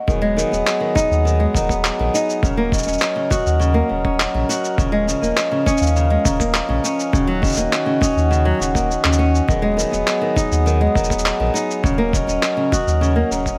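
Folktronica at 102 BPM with a delicate, autumnal mood, built over chords that hang on an Eb bass, such as Abm7/Eb, Gb/Eb and Ebm7. A fingerpicked flamenco guitar with audible finger squeak plays arpeggios through digital delay, while a reedy, breathing pedal harmonium holds sustained chords and a dark, ringing vibraphone adds a second line, also through delay. Underneath, a round sine sub bass with tube saturation pairs with muffled, pitched-down sampler-style kick, shaker and handclaps, all overdriven, set in an echo chamber reverb with vinyl crackle across this short excerpt from a longer piece.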